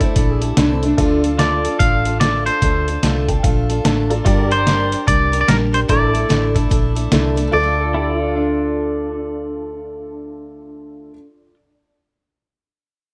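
Brooding and lonesome, this honky-tonk and classic country excerpt swings at 147 BPM in D minor, with a twangy, clean electric guitar carrying the melody from 1.4 seconds over picked, full-bodied steel-string acoustic guitar, a background detuned, jangly upright piano that plays a fill at 3.0 seconds, and slide-played pedal steel chords with volume swells. Underneath, a dark, foam-muted vintage fingered electric bass pairs with an up-front trip hop sampler-style kit, pitched down and muffled with a thumpy kick, that drops out at 7.4 seconds. A slightly broken-up second guitar through a small old amp, bathed in tape echo, returns at 7.8 seconds as the chords move from Asus4 through Dm and Gm, all under light reverb.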